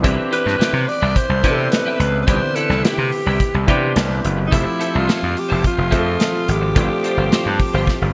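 A straight 4/4 groove at 107 BPM drives this glossy, upbeat 1980s jazz-funk pop excerpt in C major, built on a dark, up-front studio drum kit with a tight kick and a punchy, overdriven slap bass, with a drum fill at 7.9 s. A warm grand piano with lush chorus moves through Cmaj7, Fmaj7 and G7sus4, while a twangy, compressed twelve-string electric guitar with ensemble chorus picks a riff in the background. From 0.3 s a close-miked, raspy alto saxophone leads with breathy subtone, scooped notes, light vibrato and a jazz growl, all set in a bright digital production with a lush hall reverb of 1.8 s.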